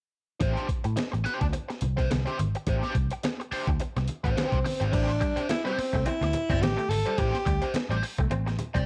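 A light reverb and the soft haze of a home cassette recording frame this short funk fragment, cut from a longer piece, moving at 106 BPM in 4/4 with a 16th-note swing in A minor over an Am7 chord. Up front, a gritty, compressed breakbeat sampler-style kit sets a hypnotic pulse with a thumpy kick, high-tuned snare, hi-hat and crash, its tone colored by tape. A dark, round, foam-muted vintage bass, picked and amped, anchors the low end, while a biting overdriven guitar, warm and picked, fills in accompaniment through wah, tape and plate reverb. Bright, low-tuned congas with a thin skin sit in the background in a small room sound. At 4.4 seconds a breathy, whispered tenor saxophone enters up front, close-miked and intimate, playing a jazz-style solo with vibrato and a soft attack until 7.7 seconds. From 4.9 seconds a bright, twangy, scooped clean electric guitar adds a compressed riff in the background, washed in spring reverb and tape.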